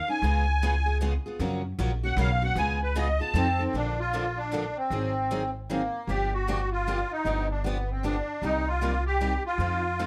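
A reedy musette accordion opens this charming, swinging fragment of acoustic string swing in the jazz manouche style, carrying the melody at 154 BPM in a lilting 3/4 with a swung eighth-note feel. Two picked steel-string acoustic guitars join almost at once as accompaniment: one woody and full-bodied with the mellow character of old strings, the other brighter, sitting lower in the mix. An upright bass played pizzicato on gut strings adds a thumpy, up-front foundation. The accordion's shimmering, airy musette tone, touched with plate reverb, takes a solo over the opening F# major passage built on C#7, F#maj7 and F7 until 3.7 s. The music then shifts to Bb major for a second section, moving through Bbmaj7, Ab9, Gm7, G7 and Cm7 before the clip cuts off at 10.1 s. A light room reverb gives the small ensemble a cozy, intimate sound.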